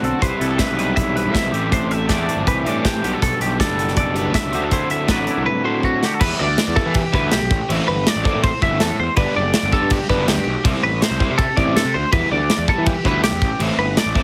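A chorused twelve-string electric guitar rings out bright, compressed arpeggios between F#4 and E5 across this cut from a longer math rock and midwest emo piece in G major. It moves at 162 BPM in a straight 4/4, and its wistful yet bright mood comes from chords such as Cmaj7, Am11, Gmaj9 and D9. Beneath it, a double-tracked, crunchy overdriven guitar plays a warm riff, and a fuzzy, growling picked bass supplies the low end. A clean, twangy electric guitar adds accompaniment until 6.2 seconds. An acoustic studio drum kit sits up front in a pumping room, with a punchy kick, a medium-tuned snare, hi-hat and crash, and a drum fill at 5.8 seconds leads into a second section built on Em7, Am9, Gmaj9 and C69. The mix is dry and heavily compressed, giving it a radio sound.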